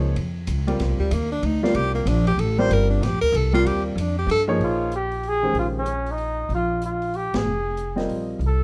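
Spiritual and hypnotic, this brief modal jazz cut swings in 3/4 over Bbm9 and Cm9 harmonies, with woody, thumpy upright bass up front, a warm baby grand piano comping, and an open drum kit of dark cymbals, high-tuned snare and punchy kick. A breathy tenor saxophone solo with scooped notes and vibrato runs from 1.0 until about 4.4 seconds, then a dark, distant trumpet with light vibrato and plate reverb carries the melody from 4.6 seconds. The band hits an accent at 7.3 seconds, all within a dark, lightly reverberant production.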